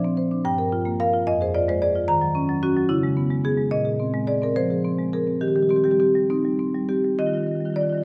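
A dark, reverberant recital-hall sound surrounds this flowing, warm contemporary classical fragment for solo marimba, played with medium mallets up front and mid-forward across a span from F2 to Bb5 in a rubato 6/8, drifting through Gm7, Fm, Ebm7 and Dbm7 before settling through Bb9sus4 and Eb6 onto Ebadd9 at 7.2 seconds.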